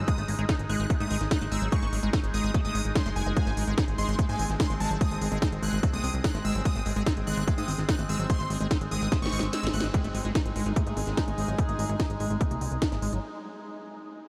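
Hypnotic and psychedelic, this psychedelic trance excerpt drives at 146 BPM in 4/4 with a straight feel in G# major, cut from a longer piece and opening in the middle of a drop. A heavy, tape-warm electronic kick sits up front beside a punchy, funky analog bass with a plucky filtered attack, while a techno kit adds a cracking snare and smooth hats. Over this, a squelchy, resonant acid bass riff runs through chorus, cassette tape and tape echo, a nasal drone with moving overtones holds sustained chords, and a thick, bright, detuned unison lead carries the melody through phaser and tape echo, with sidechain pumping on the drone, acid bass and lead. A barely audible electronic zap flickers at 3.3 seconds, then a drum fill arrives as the kick drops out briefly and a band accent lands at 9.8 seconds. From 9.9 seconds a floating, bowed string section fades out in the background as a filter sweep moves over the acid bass, all bathed in a huge ambient reverb that makes the mix dreamy and soaked.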